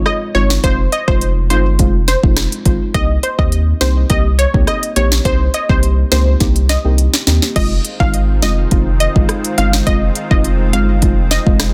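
A dense, heavily limited and nearly dry mix carries this sultry, hypnotic dancehall piece at 104 BPM in F minor, where a saturated, thick sub bass and an up-front electronic drum kit with deep kick, sharp, softly clipped snare, crisp hi-hats, rim clicks and crashes (with a fill at 6.4 s) drive beneath mellow, nasal chord stabs with chorus moving between Fm7 and Cm7 and a round, detuned analog pluck melody treated with chorus and delay, until a lush, slow-attack unison pad with sidechain pumping joins at 7.6 s as the harmony returns to Fm7.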